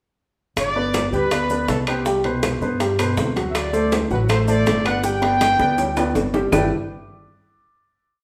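At 0.6 s a clear trumpet section enters with a motif-based melody over a thumpy gut-string upright bass tumbao that anticipates the chords, ringing congas with slaps and open strokes, tight high-tuned bongos with hand bell, metal-shell timbales with bell, woody claves on a two-bar time line and grainy maracas. A present baby grand piano joins at 0.8 s with an octave montuno in this short, sunny, joyful salsa piece at 161 BPM in G major, which moves through a drum fill from 5.0 s into a final chord at 6.5 s, all captured as a band playing live in one room with a large studio reverb.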